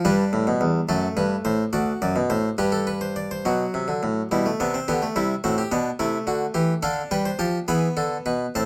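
Serious and solemn, this short cut from a longer baroque-style fugue unfolds in four voices on a solo harpsichord at 71 beats per minute, counted in dotted quarters in a straight 6/8. The instrument is an Italian-style harpsichord with a plucked, nasal and bright tone, captured close and up front so each voice stays detailed across a range from D2 to B5. The opening phrase moves through G, D/F#, D7 and back to G, settling the harmony before a second phrase begins at 3.5 seconds on B minor. From there the chords step through G/B, C, Am/C and D minor, closing on an unresolved E7 as the cut ends at 8.7 seconds. A light reverb surrounds the otherwise dry, intimate sound.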